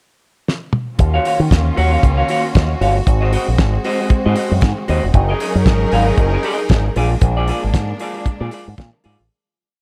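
Sultry and driving, this short disco piece in Eb dorian moves at 116 BPM with a light sixteenth-note swing: a dry 70s drum kit with a fat snare and tight kick opens with a fill at 0.5 seconds and then sets up a four-on-the-floor beat with open off-beat hats, joined at 1.0 seconds by a punchy, up-front fingered bass through an envelope filter playing a syncopated line with muted ghost notes and chromatic approaches, a twangy, slightly broken-up guitar chopping sixteenth-note rhythm, and a lush bowed string section holding sustained chords with vibrato, all in a dark, small-room production that fades out from 7.2 seconds.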